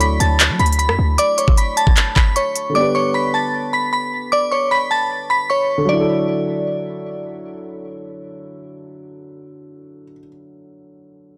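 Triumphant yet wistful, this half-time trap fragment opens with an overdriven trap drum kit of knocking kick, crisp hi-hats, handclaps and rim clicks alongside a punchy, tight 808-style bass, both of which drop out within the first 2.6 seconds. An up-front, glassy FM synth bell carries the high melody with chorus and tape echo until 7.0 seconds, while a dark, mellow grand piano with audible action noise and a boxy character plays the accompaniment over Dadd9 and G, continuing alone until 11.4 seconds. The recording is dry and gritty, with little reverb.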